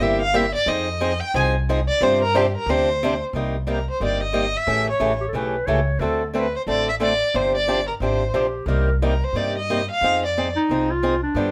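A smooth, bowed violin with vibrato leads this bittersweet, swinging snippet of jazz manouche in C minor at 180 BPM, soloing until 3.3 s over bright, boxy picked acoustic guitar and a woody, thumpy pizzicato upright bass, while a warm clarinet with scooped notes adds a jazz-style second line briefly from 5.2 s and again from 8.3 s, all under light reverb.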